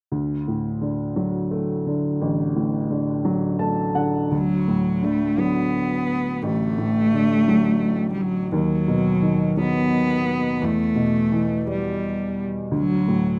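A lilting six-eight sway at 57 BPM, counted in dotted quarters, carries this short, romantic pop ballad cut from a longer piece in D major. A clear baby grand piano opens alone, playing accompaniment with long sustain across a broad register from A1 to A5, and it adds a brief fill just before the cello arrives. At 4.3 seconds a single bowed cello takes the melody, its rich, smooth tone held close and even, with vibrato within a narrow span from F#3 to B3. Both instruments sit up front, and the harmony settles on D before moving through B/D# and Em and returning to D near the close. Light reverb and a small-room ambience give the rough home-demo mix an intimate, open feel, with the instruments tuned slightly below standard pitch to A4 = 439 Hz.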